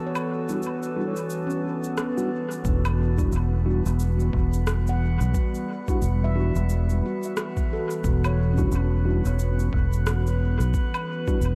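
This hazy, spacious ambient dub excerpt opens on a warbling, lo-fi pad holding a dark Em9 chord with a slow attack and long release, alongside ringing, meditative handpan arpeggios played with soft fingertips through analog delay and a drifting glass-harmonics texture of bright, glassy overtones, both pad and texture bathed in chorus and their own reverb. An electronic shaker, woodblock and rim click soon add a tape-tinged, dub-echoed patter with a gentle 16th-note swing, while a mellow tine electric piano drops very quiet, clean stabs into the haze. After this opening break, a round, up-front fingered electric bass and a muffled, thumpy, pitched-down kick drum with overdrive enter together at 2.6 s, giving the piece its low-end weight. The handpan falls away at 10.0 s as the other parts carry on to, or nearly to, the close of the excerpt. The whole mix feels dreamy and soaked in a huge ambient reverb.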